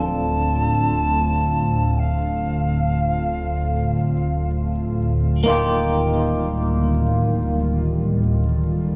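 Dark and cinematic, this brief excerpt of free-time trip hop in D phrygian rests on a deep, rumbling detuned saw bass held on D1, tube-saturated and up front, beneath a warbling, nostalgic tape-like pad carrying sustained chords with chorus and its own reverb. A twangy, scooped clean electric guitar plays accompaniment through tremolo, tape echo and a filter sweep running the full 9.0 seconds, while a hollow, close-miked concert flute sings a tongued, vibrato-laden melody between F5 and A5 until 5.1 s, just before the harmony moves from Dm7 to Ebadd9/D at 5.5 s. Cassette tape grit, vinyl crackle and light reverb give the home recording a hazy, lo-fi patina.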